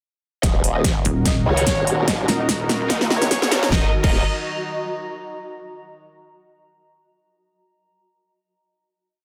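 Heavy wobble dubstep with an aggressive, chaotic mood and a swung half-time beat, this short piece is one build that resolves onto a final chord at 3.7 seconds. A punchy, layered kick and a big-room kit with a huge snare, crisp hats and crash drive a drum fill and filter sweep, while two up-front, detuned wobble basses carry modulated phrases with changing wobble speed: one formant-swept with chorus and overdrive, the other pulsing, saturated and mellow, answering the first. Above them a sul tasto chamber violin section repeats an intimate riff with light vibrato and delay; a lush sawtooth unison pad, a blurred, evolving granular cloud pad that lingers to 5.3 seconds, sparse double-tracked high-gain guitar stabs and a very quiet riser fill out a dense, heavily limited mix with digital ambience.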